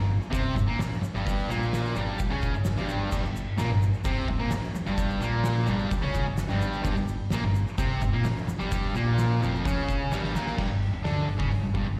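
Heard through a venue's PA in a live gig setting, this garage rock clip carries a light recital-hall reverb that lends the room some air. The mood is raw and swaggering, set in a straight 4/4. An up-front, double-tracked fuzz guitar drives a picked, compressed riff with slapback echo. Beneath it, a woody fretless electric bass sounds hollow-bodied, growly and round through tube saturation and subtle chorus. An oversized, low-tuned acoustic drum kit booms from a stone room, its fat snare, punchy kick, hi-hat and crash coming across dark and gritty, and it plays a fill from 10.1 to 10.6 seconds. A grainy egg shaker sits close but in the background, while the harmony moves from a Bbm69 to a G5 at the closing section.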